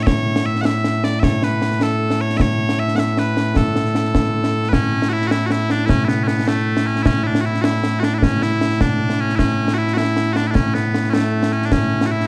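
Proud and ceremonial, this Scottish traditional pipe music excerpt moves in a straight 6/8 at 103 BPM (dotted quarters) in A major, tuned to A4 = 438 Hz. Piercing, brilliant bagpipes carry the melody up front, sounding continuously from 0.0 seconds across a range from A2 to F#5, while close, acoustic concert snare and bass drum with dark cymbals come in at 0.1 seconds. The same opening section repeats from 4.7 seconds, all set in a moderate recital hall reverb with a warm production.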